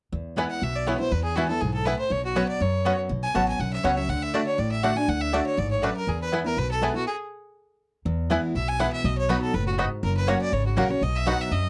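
A clear, biting fiddle with slapback echo carries the melody up front in this rustic, lively bluegrass excerpt at 242 BPM, over picked steel-string acoustic guitar, woody pizzicato upright bass, twangy fingerpicked banjo arpeggios and round mandolin stabs, pausing for a stop at 7.1 seconds before shifting from E mixolydian to E major at 8.1 seconds in a dry, close 1970s-style studio sound with light reverb.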